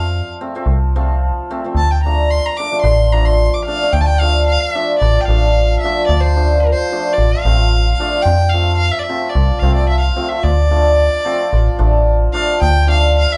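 Heard from further back in a small, reverberant room, this soulful, bittersweet klezmer excerpt in D minor moves at a straight 110 BPM over F and D minor chords, with a pure, floating bowed violin carrying the melody sul tasto, a shimmering, ringing hammered dulcimer in accompaniment, and a metallic, digital FM bass with a mellow decay holding the low end.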